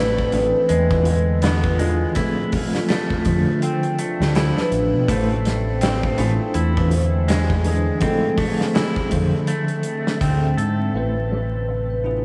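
Drenched in a vast ambient reverb with vinyl crackle over a dreamy mix, this hypnotic, melancholic trip hop excerpt drifts at 82 BPM with a swung 16th-note feel in A harmonic minor, cycling through Amadd9, E7b9, Fmaj7 and Dm7. A round, punchy dub bass and a tight, gated 80s kit with low-pass filtered drums sit up front, while a metallic vibraphone carries the gritty, tape-echoed melody over a bell-like tine electric piano with tremolo and a twangy, slightly broken-up guitar playing arpeggios until 10.9 s. A warbling, detuned pad hums in the background, its filter sweeping from 10.9 s to the end at 12.2 s.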